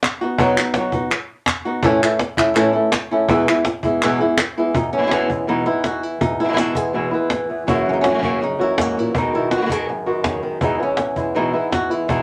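Flamenco in E major at 164 BPM, fiery and proud, cut from a longer piece: a woody cajon with faint snares and crisp, close palmas hand claps drive the opening, with the claps dropping out at 4.6 seconds. A boxy, fingerpicked flamenco guitar carries the melody up front from 0.2 seconds, its finger squeak audible, while a second fingerpicked guitar adds stabs from 4.8 seconds over chords moving from F#7 to B6 and back to E. The parts sit in a club reverb with a short, wet tail.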